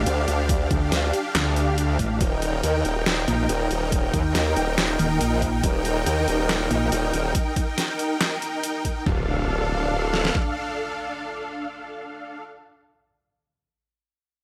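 A metallic, aggressive FM wobble bass drives this chaotic, menacing heavy wobble dubstep drop at 140 BPM in a half-time feel in D phrygian, joined by a saturated formant-sweep wobble bass with a sawtooth edge, two layered, overdriven electronic drum kits with a knocking kick, deep snare and bright hats, and huge, lush detuned supersaw chords with sidechain pumping over Dm and Eb, until the metallic bass drops out at 6.9 seconds and a background electronic impact arrives at 9.1 seconds in a dreamy mix soaked in plate reverb.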